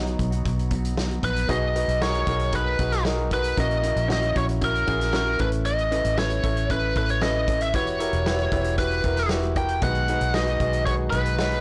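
A clear concert grand piano with deep bass, a round, foam-muted vintage electric bass and a dark, clean electric guitar riff in the background open this uplifting, hopeful piano-driven pop excerpt together. A natural country drum kit with a fat snare and a punchy, softly clipped kick comes in just after, and the guitar riff drops out at 1.5 seconds and returns at 9.8 seconds. From 1.2 seconds a bright, picked lead guitar with overdrive carries the melody up front over chords that move from B6 through F#7/A#, Aadd9 and Emadd9. The whole recording sounds blown-out and overdriven, set in a small room with light reverb.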